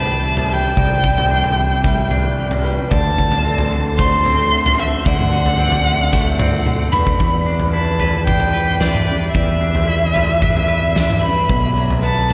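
A straight 4/4 pulse at 112 BPM carries this cinematic, brooding post-rock passage in E minor, cut from a longer piece, where a huge arena drum kit with a fat snare and punchy kick enters at 0.4 s beneath a growling, overdriven fingered bass. An up-front, richly bowed solo violin with vibrato sings the melody through analog delay, while a clean, picked electric guitar rings out arpeggios alongside a bright, metallic vibraphone with slow motor vibrato tucked in the background, both also echoed by analog delay. Everything sits in a dreamy mix soaked in vast ambient reverb, and a drum fill at 6.7 s moves the harmony from Cadd9 and D7 into Em7 and Bsus4.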